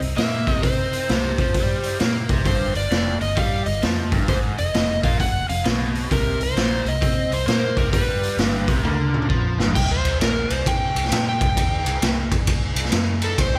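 Lightly reverberant and raw, this gritty, swaggering excerpt of blues rock and southern rock swings at 132 BPM, with a boomy, saturated garage drum kit up front, a round, foam-muted fingered bass, a double-tracked picked guitar riff with slapback echo that stops at 9.7 seconds, a very quiet, thick organ on a slow rotary speaker holding sustained chords, and a dark, overdriven slide guitar carrying the melody before a drum fill leads into its solo from 9.8 seconds.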